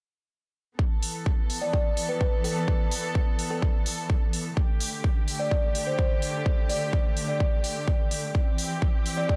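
Euphoric and uplifting, this short cut from a longer festival progressive house track moves at 127 BPM in a straight 4/4, tuned slightly sharp to A4 = 443 Hz. A punchy, up-front electronic kick drum and a muted studio string section enter together at 0.8 seconds, the kick layered and re-recorded in a small room, the strings bowed con sordino with a dark, veiled tone, vibrato and a smooth top as they hold sustained chords under sidechain pumping. Crisp, layered electronic hi-hats join just after, and at 1.6 seconds a kalimba carries the melody with warm, woody, hollow-box thumb plucks that ring out airily through tape echo. The harmony moves from Asus2 to Gsus2 and lands on C near the end of the passage. A studio reverb surrounds the mix, giving the groove a polished sense of space.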